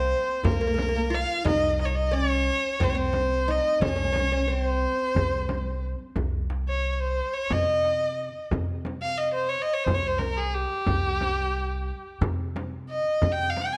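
Turkish makam ensemble music in 7/8, soulful and longing, cut from a longer piece: a single bowed violin carries the melody up front with rich vibrato and expressive portamento, while a plectrum-plucked fretless oud with woody double strings plays a deep second line until 5.8 seconds. Beneath them, a pizzicato upright bass on steel strings gives a dark foundation. From 0.4 seconds, a close frame drum played with soft hands enters together with a crisp, compressed metal-shell darbuka set in the background, all within light reverb.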